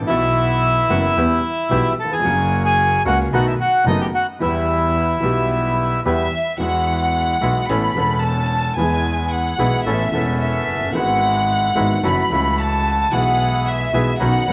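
A reedy, airy bandoneon carries the tape-echoed melody of this passionate, melancholic rubato tango excerpt at 111 BPM in E harmonic minor, with a second, vintage-toned bandoneon adding stabs, a woody, boxy upright piano accompanying, and a biting, earthy bowed double bass underneath, until an intimate sul tasto chamber violin section enters at 6.0 seconds and takes over as soloist at 6.6 seconds as the music turns to E major, all within a studio echo-chamber reverb and vinyl crackle.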